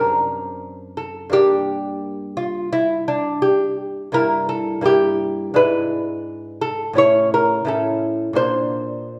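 Rubato and loosely in 4/4, this solemn, introspective excerpt of a baroque-style classical dance features a solo lute, fingerpicked up front with delicate gut strings and some octave-doubled courses, as it moves through a shadowed chord progression over 9.2 seconds, suspended in the lingering reverb of a recital hall.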